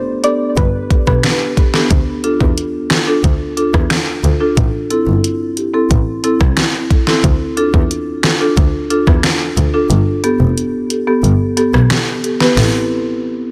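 Hypnotic and bouncy, this 90 BPM dancehall excerpt opens with a soft, round pluck carrying a brief melody through chorus and delay until 1.2 s, while a dark marimba struck with medium mallets pumps against the sidechain as it outlines chords moving from Gadd9 through Dm and Am. A bowed double bass adds a rich, smooth line with vibrato beneath a layered, electronic pop kit of finger snaps, hi-hat, rim click, deep snare and knocking kick, overdriven and up front. The kick drops out at 9.9 s, leaving the snaps, hi-hat, rim click and snare to carry on with the marimba and bass over a dense, heavily limited mix with light reverb.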